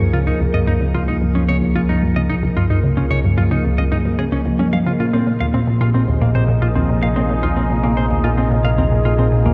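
Ambient, cosmic and luminous at 111 BPM in Db lydian: an up-front, morphing, warbling wavetable pad holds sustained chords through a phaser, a squelchy, resonant blip pluck plays a riff with phaser and tape echo, a round, deep analog bass anchors the low end, and a bright, clean electric guitar picks arpeggios through tape echo and shimmer reverb, as the harmony shifts from Dbadd9 to Bbsus2 at 5.0 s inside a lush hall reverb and a dark overall production.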